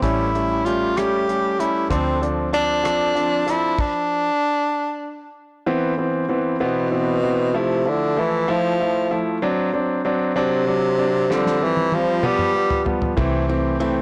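This six-eight pop ballad moves at 64 BPM in C major, its romantic, heartfelt mood carried by a tenor saxophone that sings the melody up front with light vibrato, scooped notes and a smooth top in a jazz style. A concert grand piano accompanies throughout, intimate and polished, with long sustain, deep bass and audible action noise. A bright, twangy clean electric guitar, recorded direct and very quiet, picks arpeggios at the opening and returns at 13.2 seconds, as does a round, foam-muted vintage bass with tube saturation. The damped 70s drum kit sounds dry and dark, with a tight kick, dark cymbals and a rolled-off top; it drops out for a stop from 3.8 to 5.7 seconds, then comes back with a fill at 11.3 seconds over the G7sus4 to G7 turn before settling on C6. Light reverb and studio ambience surround a blown-out, overdriven recording, cut from a longer piece.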